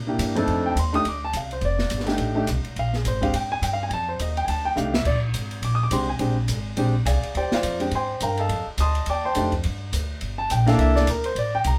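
Swinging small-group jazz at 209 BPM in F mixolydian, this short cut from a longer piece features a woody, up-front pizzicato upright bass and an intimate grand piano with audible action noise comping through F13, Bb13 and C13 harmonies over an acoustic kit with dark cymbals and a boomy kick that adds a drum fill at 4.8 seconds, all in a moderate small-room ambience.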